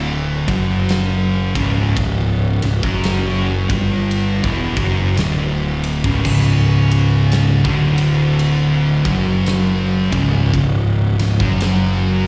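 A swung 4/4 crawl at 56 BPM drives this heavy, brooding stoner and doom metal excerpt: a dark, up-front fuzz guitar riff with distortion and slapback echo lumbers over a warm, overdriven picked electric bass with tube saturation, a big rock drum kit with a tight kick, medium-tuned snare, crash and ride sits mid-forward yet in the background with a rolled-off top from 0.5 seconds, a second fuzz guitar riff with a warmer tone joins further back at 6.2 seconds, and it all sounds like a live gig heard through the venue's PA, wrapped in small-room ambience and recital-hall reverb.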